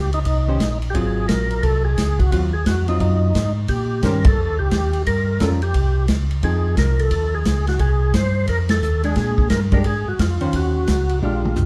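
Two tonewheel organs open this greasy, swinging soul jazz organ trio excerpt, cut from a longer piece. The melody organ is full and lightly overdriven, with a percussive second-harmonic bite, chorus vibrato, a slow rotary speaker and plate reverb. Beneath it the bass organ sits up front, mellow, round, dark and clean, also turning through chorus vibrato and a slow rotary speaker. A vintage acoustic drum kit joins almost at once, with a punchy kick, a medium-tuned snare, hi-hat, ride and toms, all with a rolled-off top and a natural small-room sound. A dark, clean hollow-body electric guitar, fingered, adds quieter accompaniment over rich extended chords, while the band hits accents at 4.2 and 8.7 seconds before a drum fill from 11.2 seconds. The whole is heard from further back in a wet club room, with some lossy compression artefacts.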